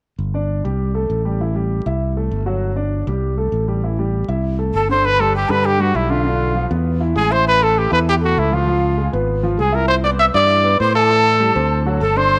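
Jazz in 4/4 at 198 BPM with a straight feel, this brief excerpt in G major has a danceable, sophisticated mood. A bright, growly fingered electric bass sits up front from the opening, joined almost at once by a concert grand piano whose deep bass and long sustain fill out the accompaniment. At 4.7 seconds a breathy bamboo shakuhachi enters with a second line in the background, its tongued, expressive tone colored by vibrato, and a moment later, at 4.8 seconds, a clear trumpet takes the melody, up front with a light vibrato in jazz style. The harmony opens by cycling through G5, C5, Am7 and C6, then moves around 5.0 seconds into a more restless passage through Bdim, E, C#7 and Cmaj9 before settling on Am7 and D7. A moderate plate reverb gives the ensemble a spacious, polished sheen.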